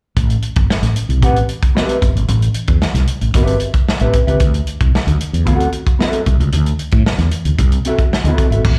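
Funk with a sly, funky mood and a straight feel, played live in a club and heard through the venue's PA with small-room reverb, cut from a longer piece. A round, dark fretless electric bass and a tight soul drum kit with mid-forward tone, dark cymbals and a rolled-off top start together at 0.2 seconds, moving from Am9 to D9 at 4.4 seconds. A clean, fingered electric guitar enters at 1.2 seconds as accompaniment, colored by subtle chorus and slapback echo.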